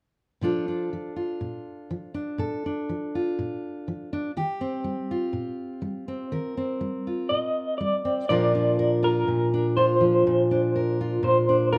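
Hopeful and tender, this short cut from a longer acoustic folk-pop ballad opens with a dark, full-bodied fingerpicked steel-string acoustic guitar, its finger squeak audible up front, moving through Bbmaj7 and Eb69 chords before a slightly broken-up, lo-fi electric guitar through a small old amp enters at 7.3 seconds with a compressed tremolo melody, both set in light reverb as the passage settles on Bbadd9 at 8.3 seconds.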